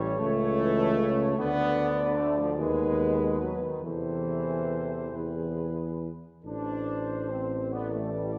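A brief, yearning and elegiac fragment from a longer classical hymn-like brass band piece opens with the full ensemble sounding together in a rubato 6/8. A dark, distant cornet carries the melody with light vibrato as a mellow French horn section sings a second line in the background, while a bright, tight trombone section sits up front in the accompaniment beside a very quiet euphonium. A warm tuba anchors the bass up front, and the whole passage blooms in a wet recital hall reverb that resolves onto A minor at 6.5 seconds.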